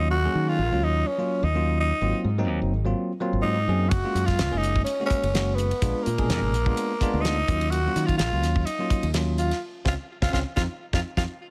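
A growling tenor saxophone carries the melody from the start, its breathy, raspy tone touched with tape echo as it soars over this slick electric jazz fusion passage, cut from a longer piece, with a light swing to the sixteenths. Beneath it, a bell-like tine electric piano supplies clean accompaniment, while a punchy fingered electric bass sits up front with a bright, direct edge. At 3.9 seconds a damped 70s drum kit enters, dry and mid-forward, with a fat snare, tight kick, hi-hat and ride cymbal. The harmony moves through rich extended chords, from Ebm9 and Ab13 to Gbmaj9 and Bb7b9, before returning to Ebm9. A band accent arrives at 9.6 seconds over Dbmaj7, moving to a bare F5 as the passage closes in a small, lightly reverberant room.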